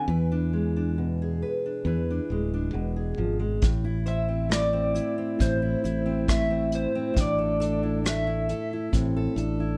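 An intimate, melancholic acoustic folk-pop ballad opens with a dark, slightly broken-up electric guitar through a small old amp carrying the lo-fi melody with tremolo and plate reverb, over a full-bodied fingerpicked steel-string acoustic guitar with audible finger squeak and a round, punchy fingered electric bass sitting up front. At 3.6 s a mellow French horn joins with a close-miked second line in classical style, touched with vibrato, as a vintage brush drum kit enters with hi-hat, kick drum and rim click, its top rolled off. The piece sits in a light reverb.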